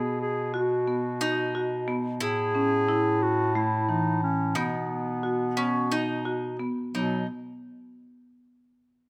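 A hopeful, restless piece of contemporary chamber music in 7/8, where a warm clarinet carries the classical-style melody over a picked, double-strung bowl-back mandolin's second line, woody rosewood marimba arpeggios struck with medium hard mallets, and a clear bass clarinet holding the low end, all closely recorded in fine detail with light reverb, the parts stopping together at 7.3 seconds in this cut from a longer work.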